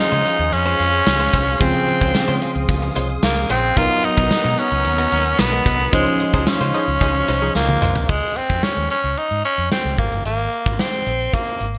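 Opening at once with a raspy, gritty tenor saxophone melody up front over glassy FM electric piano, a brassy analog pad, a very quiet clean guitar riff, a round, punchy muted bass and a big gated 1980s drum kit with jingly tambourine, this uplifting, glossy 1980s-style pop cut in Db major at 111 BPM adds funky polysynth stabs at 6.3 seconds before the keys, pad and guitar drop out at 8.1 seconds, leaving saxophone, bass and drums in a bright, plate-reverbed mix.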